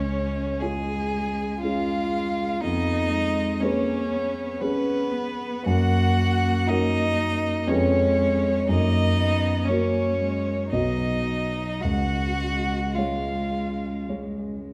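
Rubato, with uneven beats in a slow 3/4 at 59 BPM, this tender, serene fragment of a romantic classical movement for piano quartet sets a rich, smooth, bowed violin melody up front over a second violin with a focused tone and a clear, close cello second line, each string part sung with vibrato, while a dark, mellow grand piano with deep bass and short sustain carries the accompaniment, the ensemble wrapped in a wet recital hall reverb and a warm production.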